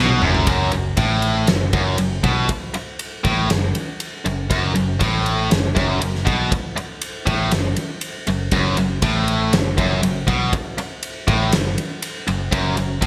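A straight 4/4 pulse at 119 BPM drives this menacing hard rock piece in F# minor, opening with a drum fill on a big, dark rock kit with punchy kick, fat snare, toms and ride cymbal under gated reverb, while a high-gain guitar sits in the background only until 0.5 s and a tight, double-tracked distorted guitar stays up front on an F#m riff over warm picked electric bass, set in a bright 1980s-style digital production with light small-room ambience.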